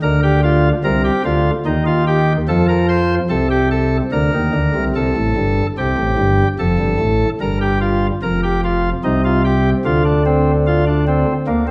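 In a straight 3/4 at 74 BPM, this baroque-style three-part fugue moves with an elegant, lively step. A single pipe organ carries every line on its own, voiced with a nasal cornet solo stop that sits up front, spanning from F1 to C5. The harmony opens on Bb/D and passes through Eb and F before returning to Bb/D, then shifts at 5.0 s into a second passage that turns toward Gsus24, Fadd9, Gm7, Cm and Dm. A recital hall reverb with a 1.5-second tail surrounds the organ, giving the counterpoint a spacious, resonant halo. The 11.7-second fragment is taken from a longer piece.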